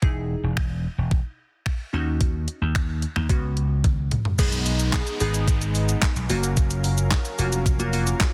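A crisp 8-bit drum machine drives this carefree, summery dance-pop excerpt in a straight four, its thumpy kick and clipped, medium-tuned snare sitting up front beside an amped, punchy vintage slap bass that pumps against the sidechain, and a drum fill leads into the second section at 4.4 seconds. Over chords running from Emaj7 through D#m7 and C#7sus4 to B6 and F#maj7, a glassy, crystalline wavetable pluck with chorus and a filter sweep decays in bright notes. From 4.4 seconds a smooth, detuned supersaw adds sustained, pumping chords while a downlifter glides in the background, all in a dry, dense and heavily limited modern mix.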